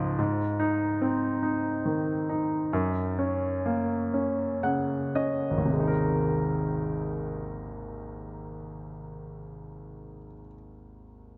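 A clear concert grand piano opens this tender, swaying pop excerpt on its own, carrying the accompaniment in a gentle triple lilt. The piano sits up front with a polished sound and deep bass, and its notes have a short sustain that the long plate reverb carries into a dreamy haze. The music moves from Ab to Gb while the pace slows over the first few seconds. Between 4.1 and 5.7 seconds the piano plays a fill that leads into a new section, where the harmony settles on Abadd9. The whole mix feels soaked in reverb, soft and dark at the top end, and the piano is still sounding when the recording ends.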